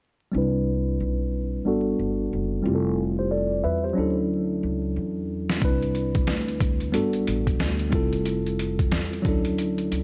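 Vinyl crackle and light reverb frame this relaxed jazz-hop excerpt in C major at 91 BPM, where a worn, slightly out-of-tune tine electric piano sits up front under a low-pass filter sweep, cycling through Cmaj9, Gmaj9, Fmaj9 and Dmaj9 chords over a dark, woody pizzicato upright bass. At 5.5 seconds a pitched-down, sampler-style trip hop drum kit joins with a gritty, overdriven edge, a thumpy kick, a medium-tuned snare and hi-hat, adding a swung 16th-note lilt to the hip hop groove.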